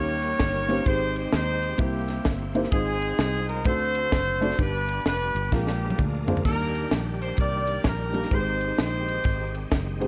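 Swinging eighths drive this uptempo gospel excerpt at 129 BPM in 4/4, with a dry, tight funk drum kit sitting up front from 0.2 seconds, bright-cymbaled with a high-tuned snare, and breaking into a fill from 5.5 to 6.5 seconds. A round, foam-muted fingered electric bass anchors the low end under a woody, slightly detuned upright piano full of audible action noise, while a very quiet tonewheel organ holds shouting chords through a slow rotary speaker. Over the top, a punchy vintage horn section carries the fervent, solemn melody with light vibrato, over a progression running from Eb7 through Ebmaj7 to Abmaj7 in a studio reverb.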